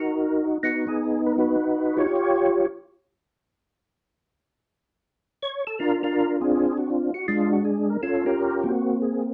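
A dark, warm production places a lone organ up front in a small room whose moderate reverb lends a touch of air. This is a short, bluesy jazz fragment cut from a longer piece, riding a swinging 4/4 feel with swung eighth notes. The percussive tonewheel organ carries the solo in a mellow, round voice, its clean tone sharpened by third-harmonic percussion and colored by chorus vibrato and a slow rotary speaker. It plays from 0.0 to 2.7 seconds, falls silent, then returns at 5.4 seconds and plays through to the end at 9.3 seconds, staying within a compact middle register. Underneath, the harmony moves from Ebm through Abm7 and Fsus2 to Bb9, then closes on Bbm69 and Bb7sus2.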